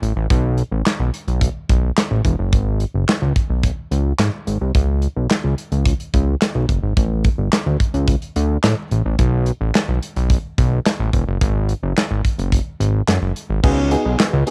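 A straight 4/4 groove at 108 BPM drives this late-night early-eighties boogie funk cut, with a modern studio drum kit of tight kick, medium-tuned snare, hi-hat, handclaps and crash cymbal sitting up front with a tape-worn cassette tint. From the opening second a fat analog bass holds the low end between E1 and A2, its detuned sawtooth tone thick and evolving, with a fast filter pluck on each note that then sustains. The harmony moves through suspended and open chords such as B7(no3), G#sus4, C#7(no3) and F#sus2, giving the funky pulse a hovering, unresolved colour. At 13.6 seconds a glassy FM electric piano enters on a C#9sus4, its bell-like attack and noise layer decaying under a shimmer of chorus and cassette grit. The whole piece carries the intimacy of a small room and a home cassette recording, and it is cut from a longer piece.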